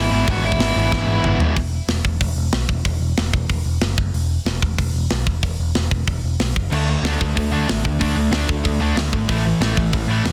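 A straight, driving 4/4 at 186 BPM opens this upbeat, energetic punk rock excerpt, with a tight metal drum kit of kick, snare, hi-hat, crash and toms entering at 0.3 seconds and a fill closing the brief opening section. Up front, a growly, punchy overdriven bass runs the full length, while the kit's medium-tuned snare and tight, softly clipped kick sit forward in a dry studio room. Over the first moments, a nasal lead guitar with a parked wah and tape echo plays a short overdriven melody until 1.4 seconds, backed by three riffing guitars in the background: a double-tracked fuzz guitar, a sludgy overdriven one and a bright, tight distorted one. The guitars drop out for a stretch where the bass and drums push on over E5 power chords broken by brief stops, then the three riff guitars return at 6.7 seconds over D5 before closing on A5. The mix is dense and heavily limited, with little reverb, giving it a modern, in-your-face sound.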